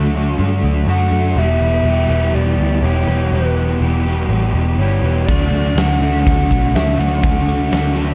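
A straight 4/4 pulse at 123 BPM drives this blissful, dreamy shoegaze and dream pop fragment in D major, where a round, foam-muted vintage bass sits up front under a crunchy overdriven guitar riff with subtle chorus, a biting overdriven guitar with reverse reverb in the background, and very quiet shimmering, octave-doubled arpeggios from a fingerpicked twelve-string acoustic, while a reedy, woody FM lead with chorus, vibrato and slapback echo carries the melody from 0.9 seconds, and a huge arena drum kit with a fat snare, punchy kick and bright ride cymbal enters at 5.3 seconds as the chords move from D to Em and back to D, all in a dark, small-room production.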